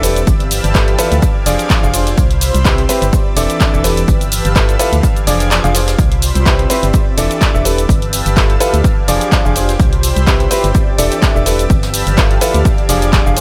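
A studio ambience carries this joyful, feel-good piano house excerpt in C major at 126 BPM with a light 16th-note swing. A clear, up-front grand piano riff with delay, a hollow organ-like FM bass, a silky chorused string pad and an ethereal, reverb-washed airy pad all pump against a punchy, tape-warm electronic kick that drops out from 5.5 to 6.0 seconds. Meanwhile an analog drum machine's handclaps, hi-hat, ride cymbal and shaker sit over very quiet brushed snare and hi-hat from a jazz kit, as the chords cycle through G13, Fm6, Cmaj7 and E7sus4.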